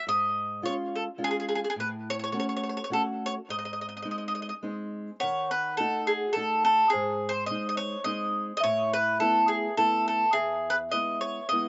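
A round, double-strung mandolin carries the wistful, passionate melody of this Italian folk serenade in a lilting, rubato three-time with a light swing, over a small, fingerpicked nylon-string guitar, while a bell-like, ringing celesta enters at 5.2 seconds with a delicate second line, each part touched by slapback echo in a dry outdoor recording with a dulled top end.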